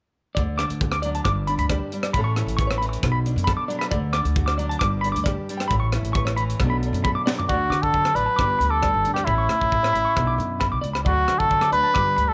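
A light studio reverb frames this carefree, danceable highlife guitar band excerpt in D major at 135 BPM, where a twangy clean electric guitar spins fingered arpeggios through slapback echo over a full-bodied, fingerpicked nylon-string guitar with audible finger squeak. A woody pizzicato upright bass and a tight funk kit with a high-tuned snare, rim clicks and toms drive the groove, and a drum fill at 7.0 seconds leads into the second section. At 7.5 seconds a cup-muted trumpet steps up front with a veiled, punchy jazz-style solo full of vibrato and scooped notes, riding a progression that cycles through D, G, A and B minor.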